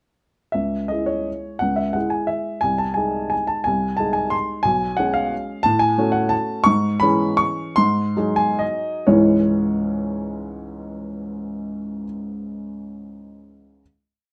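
A solo baby grand piano carries this short, complete classical waltz in a wistful, nostalgic mood, its present, up-front tone setting a single-line melody over a waltz bass in supple rubato. The pace slows from 6.1 seconds until a final chord rings from 9.1 to 11.7 seconds, all captured in close, detailed sound with light reverb.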